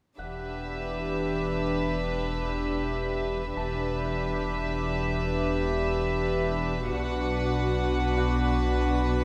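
Mysterious and eerie, this cinematic excerpt in 4/4 sets soft-attack, sul tasto violin and viola sections up front in a floating, pure haze over an intimate cello section and dark double bass section in the background, a deep, round sine sub-bass drone and a very quiet, mellow fingerpicked concert harp ringing faintly, all bathed in a wet concert hall reverb as the harmony moves from Em7 to Bm at 6.9 seconds.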